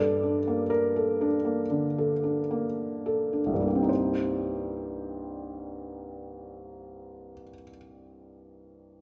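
Rubato phrasing in a loose four-beat metre gives this brief fragment of neoclassical minimalist piano a drifting, wistful feel, easing into a slowdown over the first 3.9 seconds as a Gmadd9 harmony settles. At 3.9 seconds the music turns to Cm7, deepening its melancholic mood as the solo felt-muted upright piano plays from low bass to the upper middle register with a mellow, intimate tone that sits up front. A wet recital-hall reverb with a 1.5-second decay surrounds the soft playing.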